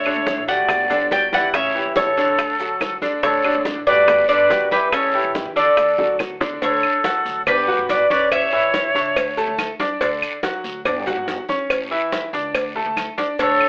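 This is Cuban son in a guajira vein, sunny and warm, moving at 142 BPM in D major, with a metallic, double-strung tres carrying the melody up front and a breathy, bright silver flute with vibrato tracing a second line beneath it until both drop out at 9.5 seconds, returning only for a brief moment at the close. A clear grand piano with long sustain rolls arpeggios throughout, while a woody, growly pizzicato upright bass sits low in the mix. Thick-skinned congas, tight high-tuned bongos and cowbell, dry claves, a raspy guiro and grainy maracas fill out the groove, with a drum fill at 6.0 seconds, and the whole mix is squeezed through a telephone-like filter in a moderate studio reverb.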